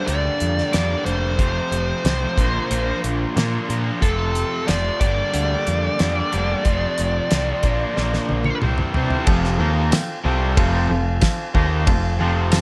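A fuzz-toned lead guitar sings the melody up front over a sunny, driving classic rock groove built from bright, crunchy guitar with spring reverb, a hollow-body guitar riff, a growling overdriven bass and a dry, damped 70s drum kit with a fat snare and dark cymbals, until a drum fill at 8.0 seconds ushers in a gritty, very quiet rotary organ, a barky, reedy electric piano from 9.3 seconds and a jingly tambourine from 9.9 seconds in the background.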